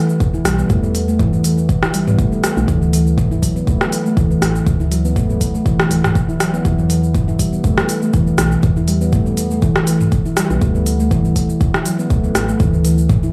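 This afro house excerpt moves at 121 BPM in 4/4, with a gentle 16th-note swing and a tuning of A4 = 438 Hz, carrying a spiritual yet driving mood. A bright, ringing handpan of nitrided steel opens at 0.0 s with meditative arpeggios. It sits close-miked and up front, with sharp finger strokes, sidechain pumping and a dub echo. Just after, an afro-pop drum kit adds crisp hats, rim click, shaker and toms, and a deep electronic kick arrives at 0.2 s, both tape-warm and re-recorded in a small room. A woody, round FM bass with a fast attack and dark, decaying tone pumps with sidechain movement underneath, while the harmony alternates between E5 and D5 chords. Light reverb and digital ambience give the echo-heavy mix a small-room sense of space.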